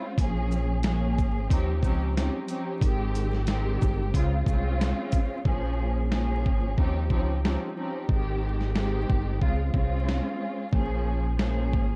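Dark, dry production with a bed of vinyl crackle frames this gritty boom-bap hip-hop cut from a longer piece, moving at 91 BPM in Bb dorian with a swung sixteenth feel. A lush bowed string section, its vibrato and portamento softened by cassette tape and filtering, carries a Bbm7, Eb13, Abmaj7, Dbmaj7 cycle. From 0.2 s a round, punchy fingered electric bass and a compressed sampler-style drum kit join, with a thumpy kick, medium-tuned snare and shaker re-recorded in a large room. The hi-hats drop out at 5.5 s.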